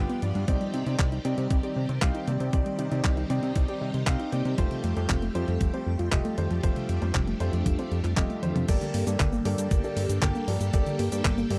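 Opening on phased string machine chords swirling over a fat, saturated analog bass and warm grand piano stabs with tape echo, this bittersweet, danceable italo disco excerpt in G minor at 117 BPM adds soft round pluck arpeggios, a clean 12-bit drum machine with cabasa, handclaps and hi-hat, and a thumpy electronic kick from 0.5 seconds, moving through Cmadd9 and Fadd9 to a drum fill at 8.4 seconds before landing on Gmadd9 in a dry, close 1970s-style studio sound.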